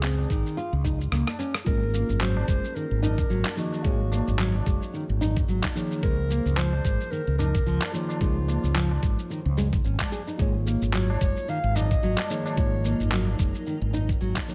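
This earthy, organic downtempo piece opens with a dark, classical-style clarinet singing the melody through a digital delay. Beneath it, a thumb-plucked nylon-string guitar plays arpeggios with a vintage 12-bit sampler grit, and a round, up-front fretless electric bass pumps against the kick. Tape-warm, gritty electronic handclaps, shaker and rim click set a gently swung groove, soon joined by a high-tuned tabla that rings briefly from a distant, roomy background and then a thumpy, compressed electronic kick. As a short drum fill wraps up, muted, felt-like synth keys enter at 1.6 seconds, adding soft, intimate, chorused accompaniment under chords that move between suspended and ninth colours. At 11.5 seconds a cloudy, blurred granular pad drifts in behind everything else with slow-blooming sustained chords, before the excerpt fades out from 13.3 seconds.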